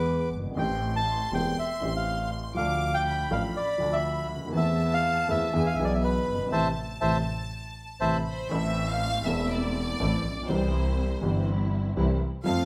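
A sultry, tense tango fragment in A minor at 121 BPM opens with a reedy, airy bandoneon carrying the melody up front over a worn baby grand piano, a rich bowed double bass with smooth vibrato, and a biting, intense violin section playing a second line. The band hits an accent from 6.5 s, the bandoneon stops at 8.2 s, and the bright violins then take a solo while a lush symphonic string section adds bowed stabs in the background. The feel is rubato, and the group plays live together in a wet stone room.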